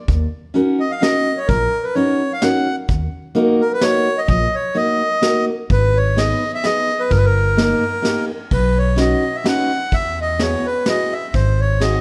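Upright bass and a vintage brush drum kit open this musette waltz together at 0.1 s, the pizzicato bass woody and growly, the kit played with brushes, with dark cymbals, a high-tuned snare, a tight kick and a rolled-off top. A picked steel-string acoustic guitar soon joins in an accompanying role, with a warm auditorium tone, and by 0.8 s a reedy single-reed accordion carries the melody, close-miked, dry and full, sitting up front in the mix. At 128 BPM in 3/4 with a light swing on the eighths, the mood is whirling and nostalgic, moving from Eb minor into G# minor at 5.7 s. The harmony passes through chords such as Ebm7, G#m, Badd9 and Eadd9 before settling on G#7. A moderate recital hall reverb gives the ensemble a sense of space, and the passage is cut from a longer piece.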